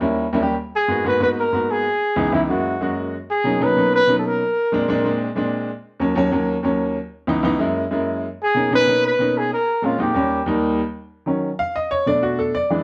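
A dark trumpet with a light vibrato carries the melody in this brief excerpt, sounding distant and roomy under a plate reverb, playing in two phrases from 0.8 to 5.2 seconds and again from 8.4 to 10.5 seconds. This is driving, sophisticated jazz at 188 BPM in 4/4 with a straight feel, set in G# minor. A bright upright piano, brilliant and woody and placed up front, accompanies throughout, moving through chords such as G#m7, C#m7, F#7 and Bmaj9. From 10.8 seconds the piano takes a short solo as the harmony shifts to Ebm7 and Bm7. The production is dark and warm, with moderate studio reverb giving the pair a sense of space.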